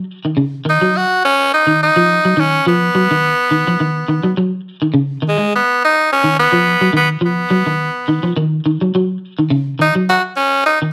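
A lightly swung 4/4 groove at 105 BPM drives this defiant afrobeat excerpt. An electric guitar at the edge of break-up, twangy and fingered with an ensemble chorus, plays arpeggios from the start over rootless C#9 and G#m7 chords before settling on C#sus4. At 0.7 s a raspy, gritty tenor saxophone joins up front with a forceful, pop-style solo melody carrying light vibrato and a slapback echo, all set in a moderate studio reverb.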